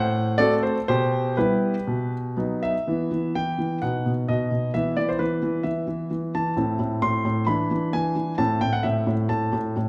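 A clear, intimate grand piano plays alone, up front with audible action noise, in this graceful, playful classical-period sonatina fragment in E minor, moving in 4/4 at a rubato 116-133 BPM through chords from F#dim/A and Em/B to B before a new passage at 2.9 s turns toward Am and E7, all bathed in a wet recital hall reverb.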